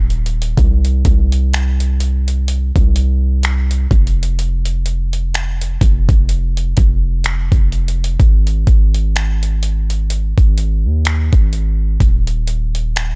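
A lazily swung 16th-note groove in 4/4 carries this tender, smooth contemporary R&B fragment, where a dusty, compressed sampler-style drum kit of finger snaps, hi-hat and a thumpy kick sits up front beside a deep, sine-toned 808-style bass whose long notes strike fast and then decay, all captured in a dry, gritty hardware sound.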